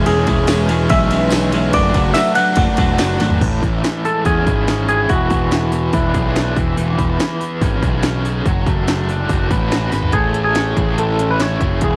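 A lightly reverberant mix opens this carefree, upbeat indie rock excerpt at 143 BPM, where an overdriven electronic drum kit with a heavy kick and cracking snare sits up front beside a fuzzy, warm picked bass, with drum fills at 3.2 and 9.9 seconds. A bright cranked stack guitar drives a tremolo-touched riff throughout, joined for the opening 3.4 seconds by a crunchy chorused guitar riff, a soft airy pad of breathy, detuned sustained chords, and a jingly tambourine in the background. Over chords moving from C#m7/E through D6/F#, Amaj7 and E7, a twangy clean electric guitar carries the melody, dropping out mid-passage and returning at 10.1 seconds.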